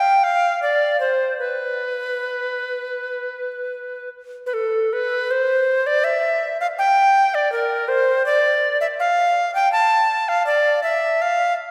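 Solemn and flowing, this brief classical excerpt of a baroque-style fantasia features a lone tenor recorder played with rubato in 4/4, its airy, woody tone carrying vibrato and a crisp chiff on each attack as it moves between A4 and A5 up front in a wet church reverb, sounding from 0.0 to 11.5 seconds.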